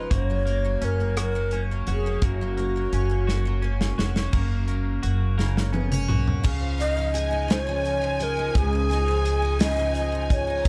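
A gentle six-eight sway carries this heartfelt, tender pop ballad fragment, cut from a longer piece, with a modern studio drum kit of bright cymbals, a medium-tuned snare, a tight kick, rim clicks and toms, adding a fill around 3.3 seconds. A breathy, close-miked shakuhachi sings the melody with a soft attack and straight tone, its bamboo voice sitting above a double-tracked steel-string acoustic guitar that is full-bodied and fresh-stringed, complete with small finger squeaks. A clean, twangy twelve-string electric guitar spins compressed arpeggios through tape echo before dropping away at 7.0 seconds, while an up-front pizzicato upright bass gives a woody, thumpy footing. From 6.4 seconds, as the harmony moves to a C#add9 chord, a studio violin section enters with a smooth, even second line shaded by vibrato. The dark, warm production keeps the sound dry and intimate, with little reverb around the players.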